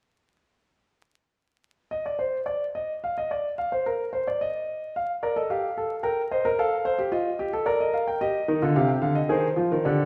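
Lively and joyful, this short cut from a longer piece is a baroque-style three-part fugue for solo concert grand piano, moving at 110 BPM in a straight 3/4. The piano enters at 1.9 seconds and plays through to 10.1 seconds, ranging from C3 to G5 with a warm tone, deep bass and an up-front presence. Its opening bars sit outside any named chord before the harmony takes shape, and from 5.0 seconds the chords move through Bb, Cm7/Bb and F7, then Bb, Eb and Fm7/Eb. A wet recital hall reverb with a 1.4-second decay gives the instrument a sense of space. A layer of vinyl crackle lends the sound an aged, worn surface.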